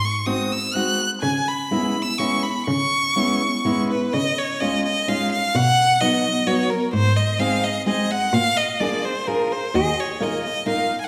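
Musette waltz with a rubato, nostalgic and bittersweet feel, cut from a longer piece. A rich, smooth violin sings the melody up front with vibrato, over a muted cello bowed con sordino for a veiled, soft-edged bass and a dark, fingerpicked steel-string acoustic guitar in accompaniment, with the music moving into a new section at 4.1 s. At 9.8 s a clean, picked hollow-body archtop guitar adds a brief second line, and the whole ensemble sits in the lush reverb of a recital hall.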